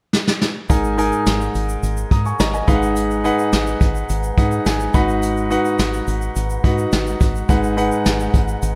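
A straight 4/4 pulse at 106 BPM opens with a brief drum fill from a roomy vintage brush kit, its punchy kick and medium-tuned snare set up front and bathed in gated reverb, before a grainy tube shaker sits in the background from 0.7 seconds. This fragment of 1980s-style pop in G# minor feels urgent and moody, with a clear, intimate grand piano carrying the accompaniment over D#sus4/G# and G#m7 chords, its action noise audible and its long sustain polished, adding a fill at 4.1 seconds. Beneath it, a deep dub fingered electric bass sounds dark, round and foam-muted, all set in a small room with light reverb.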